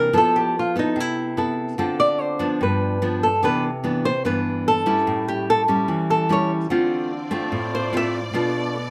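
Bossa nova with a wistful, melancholic mood, carried by two fingerpicked nylon-string guitars placed up front: one plays the melody with a small, fresh-stringed tone, while the other gives full-bodied, deep classical accompaniment with audible finger squeak, moving through chords such as Fmaj7#11, Cmaj9 and Bm7b5. At 6.7 s a lush, bowed symphonic string section enters lower in the mix, holding expressive sustained chords with vibrato and a soft attack. Light reverb lends a gentle sense of space to this short fragment cut from a longer piece.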